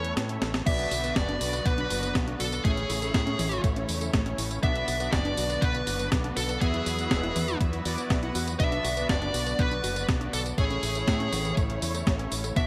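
Italo disco at 121 BPM in B dorian, nostalgic and melodramatic, where a smooth, overdriven lead guitar carries the melody up front with digital delay over bold, fat analog synth brass stabs with chorus and cassette-tape color, veiled con sordino strings holding lush chords in the background, a punchy fingered bass through an envelope filter, a clean 12-bit drum machine with snare, hi-hat, tambourine, toms and crash, and a thumpy electronic kick that enters at 0.7 seconds alongside a warbly, dusty pluck arpeggio, all set in a bright 1980s-style digital production with light reverb and vinyl crackle as the chords cycle through A, Bm and Esus2.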